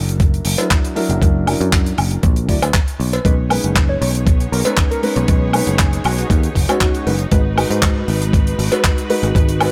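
A dry, close recording with little reverb opens this sunny, feel-good nu-disco excerpt, cut from a longer piece, on a straight 4/4 footing. Up front, a sampler-style electronic kick lands gritty and thumpy with tape-tinged compression, while a picked electric bass, bright and growly with foam-muted tube saturation, anchors the low end. A damped 70s drum kit adds acoustic handclaps, hi-hat and woodblock, and a small-room cowbell part brings egg shaker and group handclap colour. A dark, mellow grand piano with audible action noise carries the accompaniment under sidechain pumping, joined at 3.2 seconds by a lush, bowed studio string section holding sustained chords with vibrato and a smooth top, also pumping. From 3.9 to 7.1 seconds a thick, detuned unison synth lead, sawtooth and wave-folded with ring modulation, analog chorus and dub echo, sings its melody from the background.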